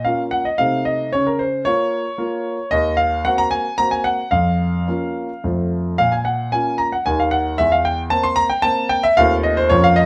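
Classical-period piano sonatina in Bb minor, a dramatic and elegant ten-second fragment cut from a longer piece, where a solo grand piano with a present, up-front tone and long sustain plays in a rubato 3/4 at 112 BPM across a range from Eb2 to C6, under light reverb, moving from Bb minor through diminished and half-diminished colours to a closing F7 over Eb at 9.2 seconds.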